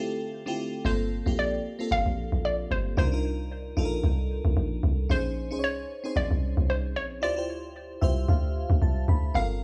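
Soulful, hypnotic amapiano in G minor at 113 BPM with a 16th-note swing, where a crystalline FM electric piano with chorus opens alone before a deep, round log drum bass sits up front and a hollow, warbling square pluck carries the melody through chorus and analog delay from 0.9 seconds, the piano adding a fill near the end over Gm11, Cm11, Bbm11 and Dm11 chords in a dry, gritty cassette sound with small-room ambience.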